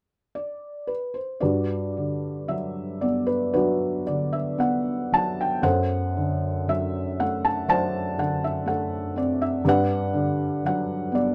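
Tender and warm in mood, this brief excerpt of lyrical classical solo piano unfolds with a gentle rubato that lets the phrases breathe freely. A felt-muted upright piano carries the whole performance alone, entering at 0.4 s and sounding until 11.3 s, ranging from F#2 up to A5. Its tone is soft, mellow and intimate, with a vintage character and a smooth, hushed quality that sits up front in the mix. The harmony settles on a Gmaj7 chord, moves through D7/F#, and returns to Gmaj7 near the close. Light reverb and a dark, warm production give the sound a closeness that suits its quiet, tender character.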